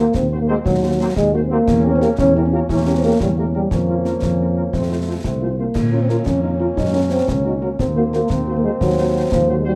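A martial, resolute 6/8 wind-band march, tuned to A4 = 436 Hz, opens with a smooth-topped, up-front tuba on the bass and a dark solo euphonium on the second line, beneath a distant, roomy trombone section holding sustained chords, a very quiet French horn section with light vibrato, and a mellow trumpet section carrying the melody in the background, while close, dry concert snare, bass drum and dusky clash cymbals join at 0.1 s, the whole set in a moderate large-studio reverb.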